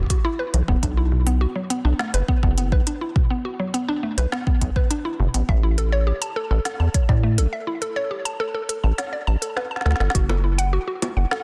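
Cerebral and melancholic, this IDM excerpt moves at 103 BPM in a straight 4/4, cut from a longer piece. A mallet-like synth pluck sits up front with a woody, round FM tone and a sub octave, spinning arpeggios through chorus and dub echo across a range from B2 to A5. Beneath it, a deep acid bass with a rubbery square-wave bite and resonant filter pluck runs through tube saturation, dark and prominent from D1 to A2. An up-front electronic kick carries a tape-softened weight, while an organic electronic kit adds bongos, smooth hats and a snare with a wooden snap, both drum parts re-recorded in a large room. The harmony drifts from Esus2 to Bm7 and A7sus4 before landing on F#m7 at 10.1 seconds, with a break from 7.8 seconds that closes on a drum fill, and the kick stops at 10.3 seconds. The mix is dry and dense, with a heavily limited modern master.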